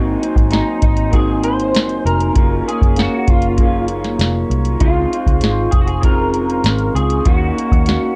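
Hazy and sunny, this 98 BPM bedroom-pop excerpt in Db major drifts through Ab7, Gbmaj7, Dbmaj7 and Ebm7 over an up-front vintage rhythm box with a deep kick, crisp snare and metallic hats, entering at 0.2 seconds, and a round, foam-muted picked electric bass. A slightly broken-up, lo-fi electric guitar through a small old amp picks out accompaniment bathed in lush chorus, vibrato and plate reverb. A second guitar through a small old amp carries the melody from 0.5 seconds with ensemble chorus and analog delay, while a worn, slightly out-of-tune tine electric piano with cassette-tape grit and a glassy, ethereal glass harmonica sustaining chords sit in the background of the dark, warm mix.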